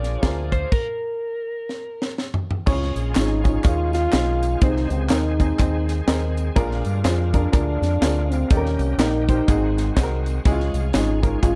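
A crisp, up-front fusion drum kit with bright cymbals drives this reverent, hopeful uptempo gospel excerpt in a swung 4/4, where a compressed, slightly broken-up electric slide guitar sings the opening melody until 2.1 seconds over woody upright piano, a shouting tonewheel organ with slow rotary speaker, overdrive and chorus vibrato, and a round envelope-filtered fingered bass, before the band stops for a drum fill that leads into a fuller section where dry tambourine and handclaps sit in the background and a mellow French horn takes up a smooth, classical-style melody from 3.2 seconds, all in a dark, warm production with little reverb.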